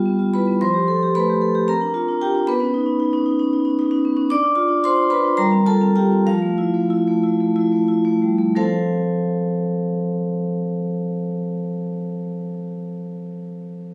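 Captured on a phone in the room with a touch of studio reverb and compression, this brief cut from a longer contemporary classical piece for solo vibraphone has a warm, playful mood, its close-miked, dry, full instrument sitting up front with a metallic, ringing tone from medium hard mallets and the motor off, moving freely in rubato 7/8 at 171-232 BPM in eighths through F lydian harmonies such as Fadd9, C11, Gm11 and Fmaj9, slowing from 3.4 to 8.6 seconds before a second section settles on F.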